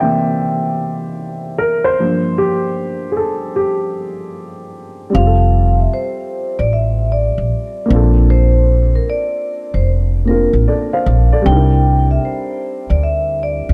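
A dark, mellow upright piano with a vintage, low-pass-filtered tone plays alone for the first 5.1 seconds of this nostalgic, dreamy lo-fi hip hop excerpt with a swung feel, until a growly, woody pizzicato upright bass with steel strings sits up front and a ringing, metallic soft-mallet vibraphone with slow motor vibrato and tape echo takes the melody, all within a small, lightly reverberant room and a dusky, warm production.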